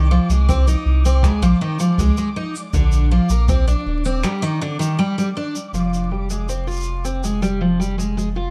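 A bright, shimmering twelve-string acoustic guitar sits up front in this delicate, autumnal folktronica fragment, its picked, octave-doubled arpeggios carrying a touch of finger squeak through a low-pass filter and digital delay. Beneath it, a round, sine-like sub bass holds a deep, sustained foundation, while a grainy, flickering granular texture hovers far in the background in its own reverb until it stops at 5.7 seconds. Shaker and finger snaps played with brushes sound distant and roomy across most of the clip, joined briefly by a boomy kick drum that drops away at 3.6 seconds. After a break from 4.2 seconds, a filter sweep on the guitar colours the closing section. The dark, warm production is dusted with vinyl crackle and light reverb, lending the piece an intimate, faded-photograph quality.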